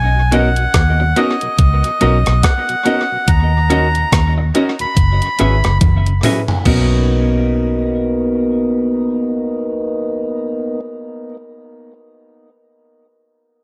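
Sweet and smooth, this lovers rock reggae excerpt at 71 BPM in B major opens with a reedy, breathy melodica melody through tape echo until 5.8 s, over a dark, round, foam-muted fingered electric bass, a mellow tonewheel organ with key click turning on a slow rotary speaker, brilliant short-sustain grand piano accompaniment, clean compressed electric guitar stabs and a thumpy gated 80s digital drum machine, whose fill at 5.8 s leads into the second section before the drums stop at 6.9 s.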